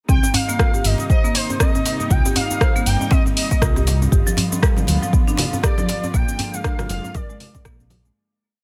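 Afro house at 119 BPM in C minor, hypnotic and driving, built on an up-front overdriven four-on-the-floor electronic kick and a dark, rumbling detuned saw bass with tube saturation, while a deep house kit adds cabasa, rim click and open hat, a buzzing hard-mallet marimba loops a 12-step sequence that drifts against the bar with dub echo, muted con sordino strings hold veiled pumping chords, a djembe with metal rattles and ringing congas from 4.3 s sit in the background, and a smooth portamento sawtooth lead with chorus, tape color and dub echo plays call motifs over Cm7, G7 and Bb7 and carries on into the fade-out from 5.5 s.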